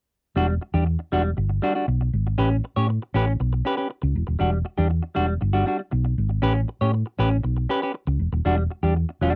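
A straight 4/4 disco groove drives this glamorous cut from a longer piece, with a semi-hollow electric guitar and a hollow-body short-scale electric bass both playing from 0.4 to 9.4 seconds. The harmony sways between Em9 and A9 every couple of seconds, giving the short passage a sleek, modal shimmer. The fingered bass sits slightly louder, its tone round, amped and dark, pushing the music forward from deep in the low register. Above it, the clean, fingered guitar carries the accompaniment in a mid-range, its sound given a warbly pitch drift that adds a seductive wobble. The recording is dry and close in a 1970s studio style, with little reverb, so both hollow-body instruments sound up front and intimate.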